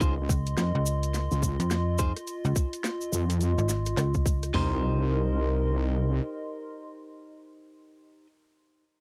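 A heavy, saturated wobble bass with chorus and overdrive sits up front in this gritty, playful glitch hop excerpt at 106 BPM with swung sixteenths in C phrygian. It is accompanied from the start by two overdriven electronic drum kits with cracking snares and bright hats (one adding a tight kick and toms, the other a rim click), a grainy, close cabasa, clean picked electric guitar stabs treated with cassette tape, analog delay and sidechain pumping, and a nostalgic, warbling lo-fi pad with chorus and reverb. A snappy FM slap bass with a metallic attack joins from 0.3 s. The harmony moves from Dbmaj9 to Cm7 at 4.5 s, where the cabasa and FM bass stop, all captured as a cassette home recording with light reverb.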